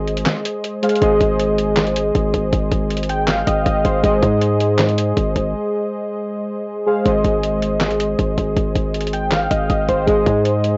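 Warbling, detuned lo-fi synth keys with a nostalgic, chorus-washed haze open this dreamy, wistful half-time trap excerpt alongside a heavy, aggressive distorted 808-style bass, joined at 0.1 seconds by a muffled, pitched-down sampler-style drum kit of thumpy kick, medium-tuned snare, hi-hat and handclaps, set in a small booth with a murky home-cassette sound, before a break at 5.5 seconds gives way to a new section at 7.1 seconds.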